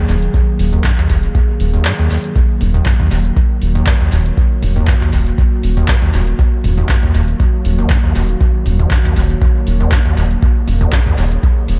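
A squelchy, overdriven acid bass riff drives this trippy, gritty acid house excerpt at 119 BPM in Eb minor, its resonant square-wave plucks soaked in distortion, analog chorus, cassette tape grit and analog delay, all pumping against the kick. Beneath it, a round, dark analog bass holds a deep Eb1 from 0.1 seconds, detuned and sustained, breathing with sidechain pumping. A warbling, nostalgic lo-fi pad sustains dark Eb minor chords from the first moment, its detuned, ring-modulated tone blooming slowly through chorus and built-in reverb while it ducks in time with the beat. A deep, tape-warm electronic kick anchors the groove alongside an analog drum machine whose metallic hi-hats, handclaps, cabasa and toms trail off into dub echo over a lightly swung 16th-note feel. The mix is dry in space yet heavy with echo, staying on a single Ebm chord throughout.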